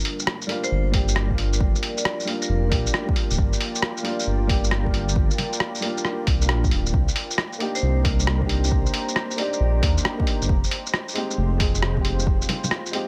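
Set in a digital ambience, this melancholic, wistful future garage excerpt swings over an overdriven electronic kick and a muffled, tape-flavoured lo-fi sampler kit of bongos, hi-hat, rim click and shaker, while a rumbling detuned saw bass and a boxy, woody upright piano with dub echo pump alongside a moody ambient pad in the background, and a metallic, airy vibraphone with delay sings brief melodies at 0.6 and 7.8 seconds as the chords move from Gm7 to Cm7 and Fm7.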